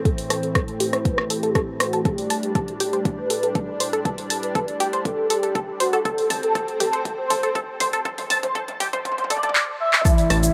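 Melodic techno at 120 BPM in 4/4, dark and melancholic, this short cut from a longer piece sits in a dark, warm production with light reverb and is built as one long build-up with filter sweeps running from the start to 10.1 seconds, including sweeps on the arpeggio synth and the lead. A lush, detuned unison pad holds sustained chords over Am and then Gsus2/A, coloured by chorus, vintage 12-bit sampler grit and sidechain pumping, while a very quiet, evolving analog drone sits on A2 beneath it. A tight, driving sequenced synth plays pluck-like arpeggios with chorus, cassette tape character, delay and pumping, and an expressive, nasal synth lead carries the melody with vibrato, ensemble chorus and tape echo. An up-front electronic kick and a layered deep house kit of handclaps, hi-hat, rim click and toms, re-recorded in a small room, drive the groove with drum fills through the build. In the final moments an airy, dreamy second lead and a grainy, close tube shaker enter at 10.1 seconds, and a fat, saturated analog bass on A1 arrives at 10.3 seconds.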